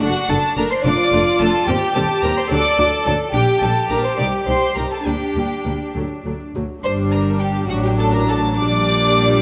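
Classical-period music for string orchestra in 6/8, taken from a longer movement, moves quickly with rubato in a dramatic, stormy mood. Up front, the violin section carries the melody with light vibrato and a soft, sul tasto attack, while a second violin line with a smooth top, intimate violas, a rich, floating cello section and pure-toned double basses fill in the harmony and bass beneath. A wet scoring-stage reverb surrounds the close ensemble, and the music moves into a new section at 6.8 seconds.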